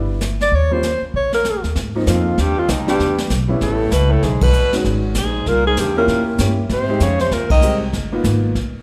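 A brisk swing at 194 BPM in 4/4 drives this relaxed, playful small-group jazz excerpt, with brushes on a jazz kit of dark cymbals and a boomy kick sitting up front beside a woody, pizzicato upright bass and a clear, open upright piano comping underneath. A breathy alto saxophone carries the melody from 0.4 seconds with subtone, light vibrato and scooped notes, joined at 2.1 seconds by a baritone saxophone whose soft attack and vintage colour shape a low second line. The band hits accents at 4.4 and 7.5 seconds, and the whole group sits in a moderate recital-hall reverb that gives it a concert-hall bloom.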